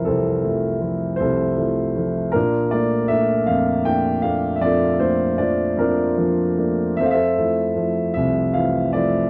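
Close, detailed microphones and a light touch of reverb place a dark, boxy grand piano up front, its notes carrying a long sustain. This is a lyrical classical solo piano fragment in F major, cut from a longer piece, moving at a slow 52 beats per minute in 6/8 with uneven, rubato beats. The piano alone fills the 9.3 seconds, spanning from C2 up to G5 with a mellow, peaceful, warm character. The harmony rests on Fmaj7, shifts to Bbmaj7 at 2.4 seconds, and settles back on Fmaj7 at 7.0 seconds. The free, breathing pulse and warm seventh chords give the passage a calm, intimate feel.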